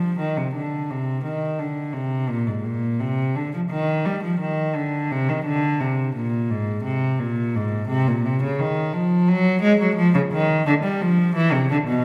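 A lone bowed cello plays from the first moment, close and up front with an airy bow and a nasal, gut-string period tone, in a grave and solemn baroque-style suite movement in C minor at 86 BPM in 4/4 with a rubato feel, its line between Ab2 and Ab3 ringing into a wet recital-hall reverb for this 12-second passage cut from a longer piece.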